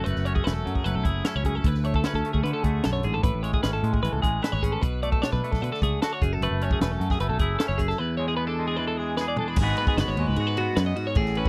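A straight 4/4 pulse drives this bright, intricate math rock and midwest emo excerpt, set by a compact cocktail drum kit with a high-tuned snare and punchy kick, under a round, foam-muted fingered electric bass. Up front, a twangy electric guitar with lush chorus plays accompaniment over seventh chords, while a clean, compressed twelve-string electric guitar picks arpeggios in a higher register. The dry, close 1970s-style studio sound keeps the playing intimate, and a drum fill at 9.2 seconds leads into a new section at 9.6 seconds.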